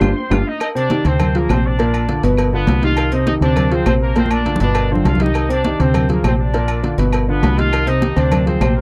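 A bright, punchy trumpet section with tight vintage vibrato carries the melody over a warm, up-front concert grand piano and a dark, foam-muted fingered electric bass in this passionate, danceable salsa cut at 202 BPM in C minor. Ringing high-tuned congas, round low-tuned bongos with cowbell, woody claves and metal-shell timbales with agogo bells sit in the background, with a band accent and drum fill opening at 0.0 seconds and another fill at 4.2 seconds. The chords cycle through Cm, Dm7b5, Bb and G7 in a dry, close 1970s-style studio sound with light reverb.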